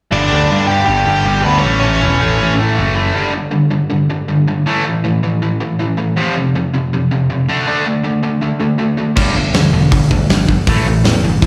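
Heard live through a club PA in a small, reverberant room, this energetic, rebellious punk rock excerpt at 160 BPM opens with a bright, double-tracked distorted guitar riff with slapback echo that drives the whole clip, sounding together from the start with an overdriven lead guitar melody with its own slapback echo and a growly picked bass. Then the lead falls away at 2.6 seconds and the bass drops out before it returns at 9.2 seconds alongside a big, up-front rock drum kit with a fat snare and tight kick.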